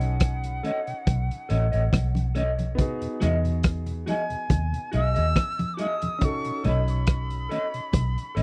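A slow 70 BPM lovers rock groove with a gentle 16th-note swing sets up this tender, romantic E major fragment, where muffled vintage drums with a punchy kick and a round, foam-muted electric bass sit up front, a piping tonewheel organ with key click and chorus vibrato and an intimate baby grand with audible action noise and tape echo fill the middle, a dark, slightly broken-up guitar adds spring-reverbed stabs from 0.6 seconds, very quiet hard-hand congas enter at 1.1 seconds, and a distant, airy concert flute carries the melody through tape echo over B9 and Emaj9 chords in a dry, close 1970s-style studio sound.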